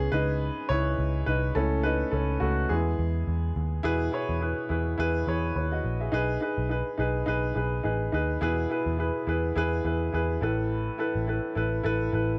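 Piano-driven pop in E major at 105 BPM, this hopeful, uplifting passage, cut from a longer piece, moves with a light sixteenth-note swing as a clear, woody upright piano, polished by plate reverb, carries the accompaniment up front. Beneath it, a vintage muted picked electric bass adds a dark, round, foam-muted low end that sits close and present, with both parts playing throughout. The harmony travels from C#m through A/C# and E to B6 at 6.1 seconds, returning to E before closing on Asus2, all in a lightly reverberant room.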